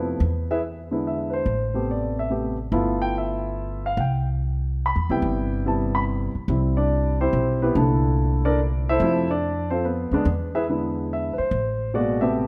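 A warm grand piano carries the melody up front, ranging from Bb2 to B5 in this relaxed, sophisticated jazz waltz in C major. It moves at 143 BPM in 3/4 with a lilting swing on the eighth notes. Beneath it, a pizzicato upright bass with steel strings sits close in the mix, its woody, thumpy tone holding the low register between G1 and F2. Both instruments play throughout the 12.5 seconds, a passage cut from a longer piece, across two statements of the same section, the second beginning at 6.5 seconds. The harmony drifts through rich colors such as E7, Am9, G13 and Cmaj7, then C13 and Fmaj7 before returning to E7 and Am9. A moderate recital hall reverb lends the pair an open, natural space.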